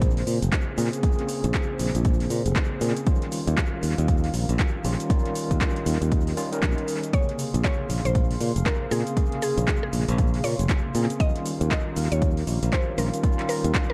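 Warm and deep, this deep house passage cut from a longer piece rides a swung groove built on an up-front overdriven electronic kick with 12-bit sampler grit, joined by a layered kit of handclaps, shaker and metallic hi-hats that shares that crunch and adds tape echo. A bright, growly fingered electric bass sits up front while a barky, tremolo-laden tine electric piano plays filtered stabs through a combo amp, and a nostalgic, warbling tape-like pad holds chords in the background, with the bass, electric piano and pad all pumping against the kick. At 7.1 seconds a woody, round mallet-like synth pluck enters with the melody, treated with chorus and analog delay within an echo-heavy mix.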